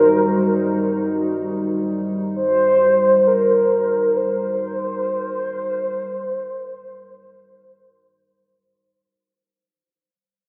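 Unfolding in free time, this dark ambient drone feels dark and cavernous, resting on a single Cm/G harmony. A horn-like synth lead carries the melody between Bb4 and C5. Its round, warbling, vintage sawtooth tone has a soft attack, vibrato, subtle chorus, cassette tape coloring and a diffuse ambient delay, and it sits up front until 8.7 seconds. Alongside it, a deep, moody analog pad holds sustained chords from G3 to C5, blending square, sawtooth and triangle waves with detuning and a sub octave. The pad has a slow attack, a long release, chorus and phaser, and it fades out across its full 9.6 seconds. A wet cathedral reverb with a 5.1-second decay places this short fragment of a longer piece in a vast, echoing space.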